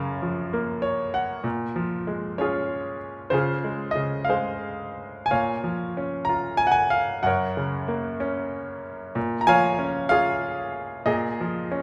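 A brilliant, up-front grand piano plays alone through this wistful, dark classical fragment cut from a longer piece, moving in a lyrical, rubato 6/8 at 63 BPM in Bb minor, tuned to A4 = 441 Hz, with a brief fill at 0.5 seconds and polished, short-sustained chords drifting from Gbmaj7 through Bbm7, Dbmaj7 and Gb before settling back on Bbm7, all set in a moderate recital hall reverb.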